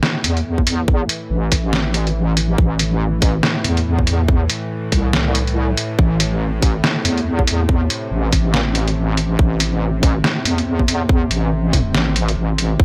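The rhythm sits in a half-time feel at 141 BPM in 4/4, with its 16th notes swung at 59%, giving this dark, brooding deep dubstep passage a heavy, lurching gait. A sampler-style trip hop kit opens at 0.0 seconds with hi-hat and a medium-tuned snare that sound pitched down, muffled and overdriven. It sits up front beside a tight, layered electronic kick with a tape-warm edge that enters at 0.6 seconds. Underneath, a wobbling square-and-sine wobble bass holds the low register in A minor, detuned in unison and thickened with chorus. Far behind it, a string-like, bowed drone sustains tense sawtooth chords built on A5, bright with vibrato, a noise layer and its own reverb. The whole cut, tuned to A4 = 439 Hz, sits in a digital ambience and runs to 12.8 seconds as a fragment of a longer piece.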